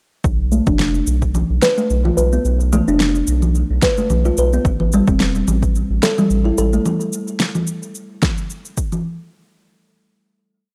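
A dry, gritty cassette-saturated recording carries this hypnotic, mystical organic downtempo piece at 109 BPM with a lightly swung 4/4 groove, where punchy overdriven electronic kick, fat snare, shaker and congas drive beneath a round, deep dotted-rhythm analog bass that pumps against the kick until 6.8 seconds, while a woody, hollow kalimba enters at 0.5 seconds with a 16-step arpeggiated sequence through tape echo and a filter sweep over an altered B7 chord before the harmony falls away at 4.7 seconds.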